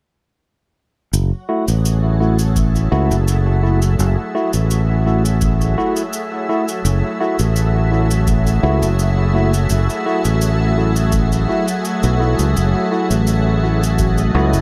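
A growly fingered electric bass sits up front in this hazy, meditative ambient dub excerpt, holding low between F#1 and C#2 at 84 BPM in a straight 4/4 feel in F# minor. Above it, a barky tine electric piano played through a combo amp adds stabs soaked in dub echo. A soft organ-like pad sustains chords with ensemble chorus and its own reverb, its detuned, ring-modulated tone sounding pure and calm. A dark, rolled-off cabasa with dub echo enters alongside the bass at 1.1 seconds, and a deep, tape-warm electronic kick joins at 2.6 seconds. From 3.3 seconds a very quiet, breathy, wind-like noise texture hovers on a single A3. The harmony rests on one F#m7 chord throughout, in a mix that is dry in room sound yet heavy with echo.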